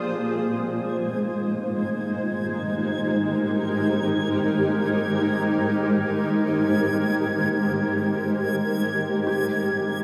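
Serene and peaceful, this free-time ambient passage, cut from a longer piece and tuned to A4 = 439 Hz, rests on a cloudy, full-bodied granular pad held up front under a filter sweep, with a very quiet, intimate felt-muted upright piano arpeggiating softly alongside it and a bright, reversed, dreamy backwards texture entering at 1.0 s, all bathed in a vast cathedral reverb as the harmony moves from Abmaj7 to Bb7sus4 at 9.3 s.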